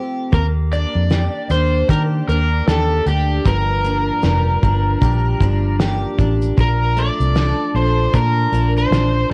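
Worn, warbling cassette tape with gentle pitch drift and light reverb colors this carefree, sunny acoustic pop excerpt, which swings lazily in 4/4 over Ebmaj7, Gm7 and Bbmaj7. A double-tracked, picked steel-string acoustic guitar opens alone before the band enters at 0.3 seconds: a bright, overdriven slide guitar carries the melody up front through tape echo, a clean, compressed electric guitar recorded direct plays arpeggios through a phaser in the background, and a dark, round, foam-muted fingered electric bass sits prominently beneath. A cloth-damped, muffled drum kit with a fat snare, tight kick and shaker adds gritty, saturated lo-fi thud until 9.1 seconds.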